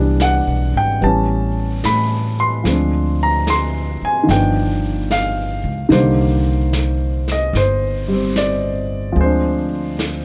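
Close, detailed microphones and little reverb give this swung jazz ballad excerpt a dry, intimate, smoky sound at 74 BPM in C minor. A polished, present baby grand piano sits up front beside a growly, woody pizzicato upright bass, while a dark, smooth brushed drum kit with a rolled-off top joins at 0.2 s on snare and hi-hat, sitting lower in the mix. The harmony moves from Cmaj7 through A7 and Dm7b5 to G7b13, then lingers on a long Cm9 before returning to Dm7b5.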